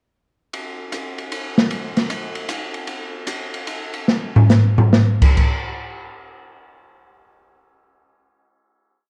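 Jazz in a swung 3/4 lilt, spiritual and searching, played by a lone acoustic drum kit with sticks: a ride cymbal pattern, hi-hat, crash cymbal, toms, a medium-tuned snare and a boomy kick, with dark cymbals and a smooth, rolled-off top, placed up front. The time begins slowing at 2.9 seconds, a drum fill arrives at 4.1 seconds, and a final hit at 5.4 seconds hangs in a moderate, large studio reverb.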